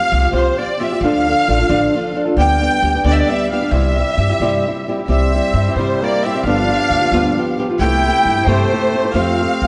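A lush, wet concert-hall reverb with a two-second tail surrounds this short excerpt of romantic, proud mariachi in a lilting 6/8 at 88 beats per minute, its top end rounded off for a gentle sheen. Up front, a rich studio violin section carries the melody in a singing upper register, its bowed lines expressive, with soft attacks and a tender vibrato. Close beside it, a dark, fingerpicked flamenco guitar supplies the accompaniment across a broad span, moving through chords such as Dm, G/D, C and G7 before settling on Fadd9. Underneath, a woody, thumpy upright bass with gut strings plays pizzicato from the opening moment. At 5.1 seconds a mellow classical-style trumpet joins with a quieter second line, its own gentle vibrato adding a proud, golden glow to the closing bars.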